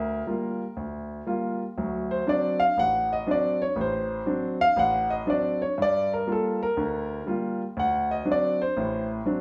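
A clear concert grand piano plays alone from the first second, a smoky, cool solo jazz passage cut from a longer piece, swinging in 4/4 at 120 BPM in G minor. The harmony moves between Gm7 and D7, with the piano ranging from a deep bass low end up into its middle-upper register. The natural, up-front piano sits in a large studio's wet reverb, captured live in one room, and the passage runs about 9.4 seconds.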